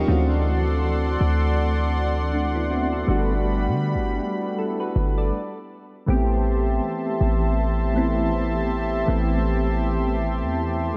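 Soft, round electric-piano-like synth keys, a smooth, detuned analog pad and a deep, boomy 808-style bass open together on a D7 chord in this moody, late-night contemporary R&B passage, cut from a longer piece and set at 80 BPM in A dorian with a swung sixteenth feel. The mellow keys, coloured by chorus, phaser and a filter sweep, sit up front beside the bass, while the sawtooth pad holds sustained chords beneath. The harmony moves to Gmaj7 at 3.1 seconds, a brief stop falls at 5.3 seconds, and Am7 arrives at 6.1 seconds, all inside a lush hall reverb that soaks the mix in a dreamy haze.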